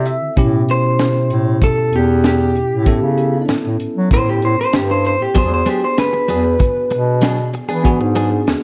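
A dry, close recording in 1970s studio style, with little reverb, frames this short, rollicking soul blues cut from a longer piece, played with a straight eighth-note feel at 96 BPM in A mixolydian. A bell-like tine electric piano opens with a brief fill and carries the accompaniment under a subtle chorus, while a bass clarinet holds down the low end with a soft attack and a roomy, classical-style tone. A crunchy breakbeat kit of hi-hat, tight kick and high-tuned snare sits up front with a saturated, gritty character and a rolled-off top. The melody, entering at 0.7 seconds, comes from an electric guitar through a small old amp, picked and slightly broken-up, bathed in spring reverb. From 5.3 seconds a direct-recorded clean guitar adds bright, compressed stabs, also with spring reverb, as the harmony moves from A9 to E9.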